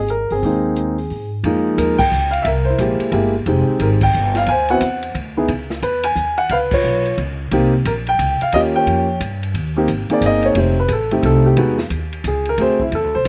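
A mellow, vintage baby grand with slapback echo and a woody, thumpy pizzicato upright bass open this playful, swinging jazz piano trio excerpt in 3/4 at 178 BPM in Ab major, joined at 0.1 seconds by a smooth acoustic drum kit with dark cymbals and a boomy kick, as the band hits accents through rich extended chords before the up-front piano takes a solo from 9.5 seconds in a dry outdoor sound.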